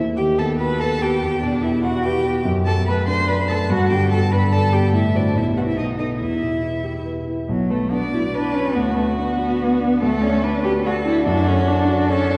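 In a quick triple metre at 144 BPM with a straight feel, this fragment of a classical-period piano trio movement moves with dramatic urgency, tuned slightly low to A4 = 436 Hz. The baby grand piano opens at 0.0 s with dark, mellow accompaniment that has a vintage character and long sustain, sitting up front in the mix. The violin carries the melody from 0.2 s in a smooth, even bowed line with vibrato, heard at a distance. The cello joins at the same moment with an expressive second line, its bowing coloured by vibrato and portamento and given a warm tone. The music begins in E minor, passing through a diminished chord and a B7 before settling in B minor at 7.5 s, where the harmony moves from Bm through Bm/D to D and D/F#. A wet church reverb with a 2.8-second decay surrounds the trio, giving the whole production a dusky, enveloping sound.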